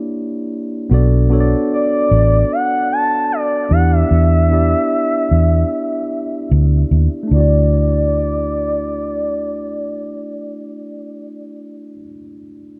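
A straight 4/4 pulse at 75 BPM carries this smooth, dreamy contemporary R&B fragment in D major, cut from a longer piece. A mellow tine electric piano opens the track at 0.0 seconds, sitting clean and close with a low-pass filter softening its chords. At 0.9 seconds a vintage muted fingered electric bass comes in up front, its foam-muted, round and punchy tone giving the groove a dark, amped weight. A gliding portamento lead enters at 1.7 seconds in a high register, its soft-attack triangle and sine tone sustained and colored by chorus, phaser, vibrato, a low-pass filter and digital delay. The harmony drifts through Gm6, Bm7 and Em7 before settling on Dadd9, all wrapped in a dark, warm production with light reverb.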